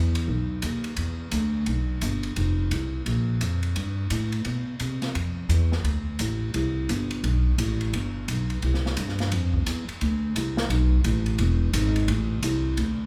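A recital-hall reverb surrounds this short jazz cut at 173 BPM, swung in 4/4, where a woody, up-front pizzicato upright bass on steel strings spans E1 to C3 beneath an airy, polished drum kit with dark cymbals, a medium-tuned snare and a boomy kick, the sophisticated, playful mood shifting from C major to F major at 9.3 seconds.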